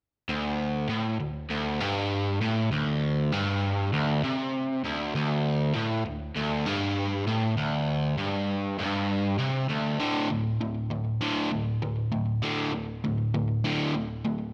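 A crunchy, bright, double-tracked electric guitar plays alone and up front from 0.3 to 14.5 seconds, its picked overdriven tone sitting between D2 and D3 with slapback echo as it opens on a D5 chord and moves into a new section at 10.0 seconds, giving this swaggering, driving rock excerpt a straight 4/4 pulse at 99 BPM, tuned to A4 = 444 Hz, in a light reverb.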